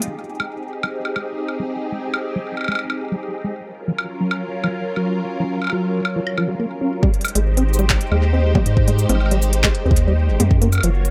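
A straight 4/4 pulse at 138 BPM drives this playful, glitchy IDM fragment, where an up-front organic electronic kit of handclaps, smooth hats, shaker, toms and woodblock plays throughout beneath silky string-machine chords with phaser, ensemble chorus and sidechain pumping, a rubbery, resonant acid bass arpeggiates through lush chorus and digital delay over Abmaj7 and Gbmaj7 harmony, and at 7.0 s a deep, tape-warm electronic kick arrives, joined at 7.4 s by a round, tube-saturated analog bass, all in a dry, close room.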